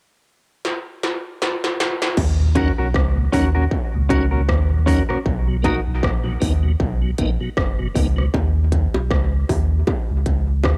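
A swung 78 BPM groove in 4/4 anchors this heavy, deep dub reggae excerpt in Eb minor, opening with a distorted, clanging industrial drum kit fill at 0.6 s before a round sine sub bass with tube saturation arrives at 2.2 s over Ebm7 and Bmaj7 chords, joined by a piping, lightly overdriven tonewheel organ through a slow rotary speaker, a clean, hollow-bodied electric guitar soaked in dub echo, and low-tuned, saturated bongos that return at 8.3 s, with cassette-tape grit on the drums, organ and guitar and light reverb over the home-recorded sound.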